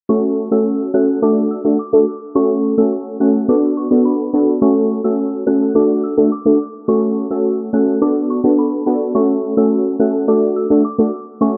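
Sultry and tough, this dancehall excerpt at 106 BPM in F# minor puts a punchy, detuned synth brass stab with chorus up front, cycling through F#m, D and Bm7 under a light reverb and a filter sweep, while a soft, pure FM synth bell carries a faint, mellow melody high above, colored by chorus, phaser and digital delay.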